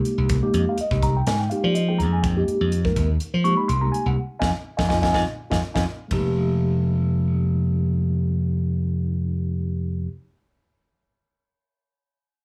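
A light reverb and small-room ambience frame this brief, polished cut from a longer electric jazz fusion piece, slick and driving in a straight 4/4 feel. A growly, glassy slap bass sits up front and loudest in the mix, bright and direct as it carries the low end from F1 to F3. Beside it, a mellow tine electric piano with a phaser plays the accompaniment over an Fm11 chord, its clean, warm tone held close and present. An airy acoustic drum kit with bright cymbals, a high-tuned snare and a punchy kick covers hi-hat, kick, ride and snare until 6.2 seconds. The band hits an accent from 4.2 seconds, and a drum fill closes the opening section at 6.1 seconds. After that the bass and electric piano carry the second section on their own.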